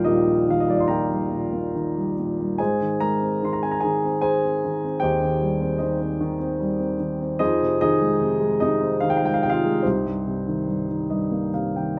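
A lone baby grand piano opens on an Ebadd9 chord, setting a calm, lyrical classical mood in an unhurried three-beat lilt that stretches and relaxes with rubato. Its tone is dark and mellow, with long sustain that lets each chord bloom, and it sits up front in a small room whose moderate reverb adds a gentle halo. The harmony moves from Ebadd9 to Abmaj7 at 2.6 seconds, then settles onto Fm7 and Cm7 toward the close. The piano ranges from deep Bb1 in the bass up to C6, giving the passage a full, rounded body. At 10.7 seconds a brief piano fill carries this warm excerpt onward, hinting at the longer piece it comes from.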